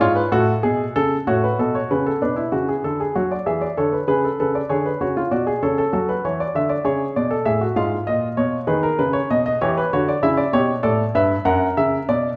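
Joyful and elegant, this baroque-style three-part fugue in B minor moves at 65 BPM in a straight 12/8, played by a solo baby grand piano that sits up front with an intimate, natural tone, short sustain and audible action noise, framed by a moderate scoring-stage reverb as a brief opening gives way at 2.2 seconds to a longer second section, in a passage cut from a longer piece.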